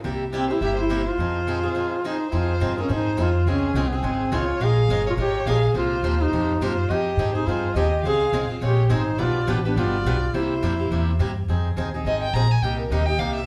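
A fast swung 4/4 pulse at 210 BPM drives this fiery, virtuosic slice of acoustic string swing in F minor, cut from a longer piece. A bright, boxy picked guitar carries the accompaniment, while a woody, thumpy pizzicato upright bass with gut strings sits up front, dark in its low register. Over them a duduk takes the melody from 0.4 seconds in a folk style, its scooped notes and smooth top sounding up front until it stops at 11.2 seconds. A single bowed violin plays a close second line with a soft attack and expressive portamento, then steps forward for a solo from 11.5 seconds, and both it and the duduk sing with vibrato. The harmony moves through minor sevenths, a Dbmaj7 and dominant chords such as G7 and C7, all heard from further back in a room with a wet club reverb.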